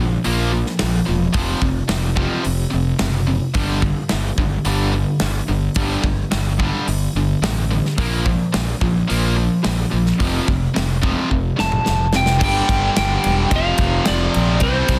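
Hard rock in G minor at 108 BPM, this heavy, menacing clip from a longer piece opens on a riff played by an overdriven semi-hollow guitar, sitting back in the mix with a hollow-body tone, and a tight, bright distorted guitar. Up front, a fingered electric bass growls with fuzz and overdrive beneath them. A gated 80s drum kit enters at 0.2 seconds with a tight kick, a medium-tuned snare and bright cymbals in a big, airy, polished gated room, and a drum fill runs from 11.3 to 12.4 seconds. At 11.6 seconds a slightly broken-up, compressed lead guitar brings in a high melody touched with slapback echo. From 12.4 seconds a double-tracked high-gain guitar adds a very quiet layer to the riff as the chords move from G5 to F5. The whole is set in a small room and given a dense, heavily limited modern master.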